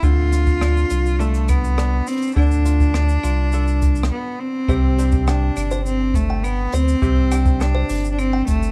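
Folktronica at 103 BPM in a straight 4/4, playful and hopeful, opens on D minor with a bright, biting cello carrying the melody up front with light vibrato, while a fingerpicked kora rings out crisp arpeggios in plate reverb over a round, deep sine sub bass. A boomy kick sits in the background beneath an airy brush kit of claves, hi-hat, rim click and shaker, and after a break at 4.1 seconds the harmony moves to Csus2 as a delicate, tinkling music box enters at 4.7 seconds with a second line in plate reverb and digital delay. The production is dark and warm in a light room, cut from a longer piece.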